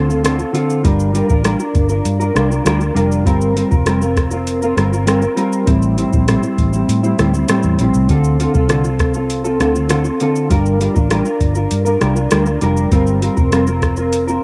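A mellow, clean electric guitar sits up front in this lonely, wistful indie pop and bedroom pop fragment, its compressed, fingered tone colored by analog chorus and a warbly pitch drift as the harmony moves through Dm7, Gm7, C7sus4 and Am7 in G dorian at 99 BPM. Beneath it, a vintage foam-muted electric bass sounds round and dark, while a soft vintage rhythm box, overdriven and up front with cassette tape grit, supplies a deep kick, metallic hi-hats, rim click and shaker. Recorded at home on cassette, the track carries a light digital reverb that lends it an intimate, lo-fi air.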